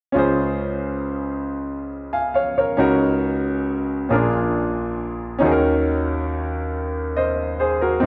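Soulful and reverent, this brief gospel excerpt in Db major moves at a slow 46 BPM in a straight 6/8, where a brilliant, up-front grand piano with natural tone and short sustain plays accompaniment from 0.1 to 8.1 seconds across a range from Ab1 to Ab5, moving through Dbmaj7, Gb6/Db, Bb7 and Ebm7 inside a moderate scoring-stage reverb and a dark, warm production.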